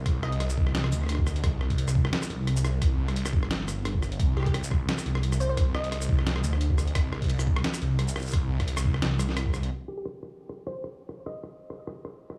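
Heavy and dark, this half-time drum and bass excerpt opens on a drop where a thick, swirling detuned saw bass with phaser sits up front beside a thumpy, pitched-down electronic kick and a gritty, tape-warm sampler-style kit of hi-hat, rim click, shaker and snare, while a glassy wavetable pluck with chorus and dub echo appears in short phrases, until a band accent at 9.4 seconds after which bass and kick stop and a filter sweep carries the remaining kit and pluck to the cut at 12.4 seconds.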